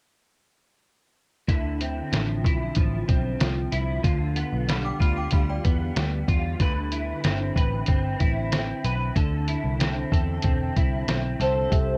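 From 1.5 seconds, a muffled, thumpy sampler-style drum kit sits up front in this mellow, wistful indie and bedroom-pop excerpt at 94 BPM in D dorian, alongside a slightly broken-up electric guitar with ensemble chorus, warbly pitch drift and cassette grit, and a dark, round, foam-muted electric bass, all moving through Dm9, G7, Cmaj7 and Am; an inharmonic FM synth chime rings through tremolo, plate reverb and analog delay between 4.7 and 6.4 seconds, and a detuned, nostalgic synth lead and a clean tine electric piano slip in only at the very end.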